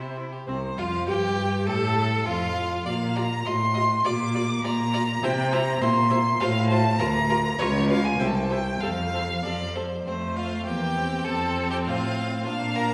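The four bowed strings of a quartet sound together from the opening moment in this brisk, spirited classical-period movement in two, with a cheerful, straight-ahead feel. The first violin carries the melody high above the ensemble, its tone focused and vibrant with vibrato, placed up front yet carrying a slightly distant quality. Beneath it the second violin weaves an intense, smooth-topped second line, while the viola fills in the accompaniment with a mellow, focused sound. The cello anchors the bass with an even, resonant tone and stands out as the most prominent voice in the blend. The harmony moves through bright major chords with a striking turn to Db around 7.6 seconds before settling home on F at 11.3 seconds, all heard through the lush reverb of a recital hall or church.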